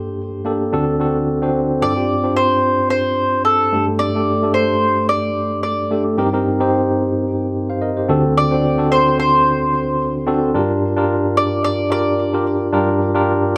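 A dark, warm studio sound with a short, wet reverb frames this pop excerpt in G minor, moving at 110 BPM in 4/4 with a light sixteenth-note swing and a nostalgic yet urgent mood. A clean tine electric piano, heard through its built-in speakers and placed up front, carries the accompaniment from the start over chords such as Gmadd9, Dm7/G and Cm7/G, settling on Gm7 near the close. At 1.8 seconds a mellow, round acoustic mandolin with picked double strings enters, also up front, to play the melody until 12.4 seconds.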